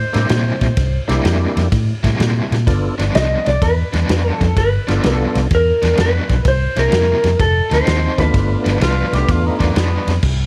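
A compressed, slightly broken-up slide guitar carries the melody in this laid-back, gritty electric blues shuffle, cut from a longer piece, over a dark, foam-muted fingered bass and a natural acoustic drum kit with a punchy kick, medium-tuned snare, ride and crash. An overdriven hollow-body guitar picks a riff through tremolo, while a full, percussive tonewheel organ with key click, chorus vibrato and a slow rotary speaker fills in the harmony over C7, G7 and F7 changes in a small room. At 8.8 seconds a raspy, growling tenor saxophone enters with a brief second line.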